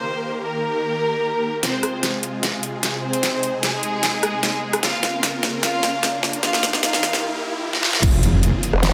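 Heavy wobble dubstep in F minor at 150 BPM with a half-time feel, this menacing, chaotic excerpt opens on a smooth, distant symphonic violin section with vibrato and digital delay carrying the melody over huge, bright supersaw chords treated with phaser and sidechain pumping, moving through Eb, Fm, Ab and Bbm. At 1.6 seconds an overdriven dubstep kit with a deep snare and metallic hats launches a build-up full of fills, an electronic riser begins climbing at 3.5 seconds, and the violins drop out at 7.2 seconds for a brief break. At 8.0 seconds an impact lands with a knocking, tape-tinged kick and a saturated, detuned sawtooth wobble bass on Fm7, followed by a nasal, resonant vowel-sweep wobble, all set in a lush hall reverb.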